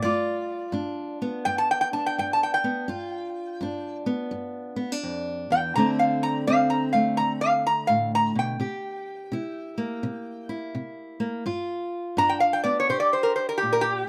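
A swung 4/4 feel at 84 BPM carries this rollicking, swaggering acoustic country blues, cut from a longer piece, where a bright, nasal metal-body resonator slide guitar played with fingerpicks sings the melody up front over a dark, woody fingerpicked steel-string acoustic guitar on old strings, the pair moving from G7 through D5 and C7 back to G7 before closing on C5 in a moderate booth ambience across its 14.1 seconds.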